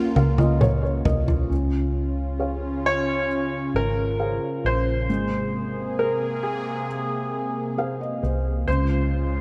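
This emotional, melancholic pop ballad unfolds in a slow, straight 4/4, drawn from a longer piece. A clear, up-front concert grand piano carries the melody, dressed in lush chorus and digital delay, while a felt-muted upright piano supplies soft, boxy accompaniment with its action noise audible and adds fills at the opening and again from 7.3 to 8.7 seconds. Beneath them, an evolving, detuned sawtooth pad holds sustained chords with a soft attack, filter swell and subtle chorus, and a dark, round, foam-muted electric bass sits punchy and close. Acoustic toms played with bundle sticks mark only the first moments with a fill, falling silent at 1.5 seconds as the harmony moves from Bbm to Dbmaj7 and later through Abadd9. A moderate, lush hall reverb and bright 1980s-style digital production give the whole a glossy, spacious sheen.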